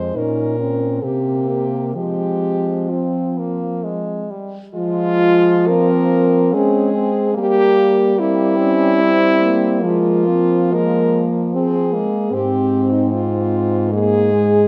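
Classical and melancholic, this brief cut from a longer lyrical piece for horn quartet moves in a rubato triple metre with a yearning quality. Three mellow French horns carry the melody, the bass and an accompaniment line, with the melody and the accompanying horn, shaded by light vibrato and a soft attack, sitting up front, while a clear-toned French horn traces a second line in the background. The dark production places the group in a recital hall with moderate reverb, and the opening phrase returns after about 4.8 seconds, stretched out until the end at 14.7 seconds.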